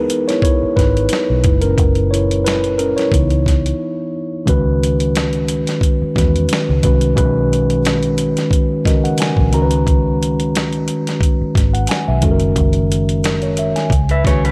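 A mellow tine electric piano accompanies this sultry, late-night neo-soul R&B cut from a longer piece at 89 BPM in C# dorian, taking a solo through the opening 4.5 seconds and a fill around 8.5 seconds, over a dark, round, foam-muted electric bass and a gritty, compressed sampler-style drum kit with a thumpy kick and a gently swung 16th-note feel, while a slightly broken-up, lo-fi electric guitar with spring reverb slips in at 14.1 seconds under a light digital ambience.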